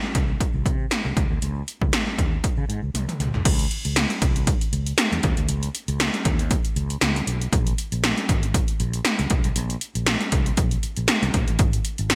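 1980s-style pop at 118 BPM with a light sixteenth-note swing, romantic and nostalgic in mood, cut from a longer piece. Up-front electronic pad drums carry a punchy kick, gated snare and toms, metallic hi-hats, tambourine and crash, while a growly, amped fretless electric bass ranges from Ab1 to Db3 beneath them. A drum fill at 2.9 seconds leads into the second section at 3.5 seconds, all set in a bright digital production with light reverb.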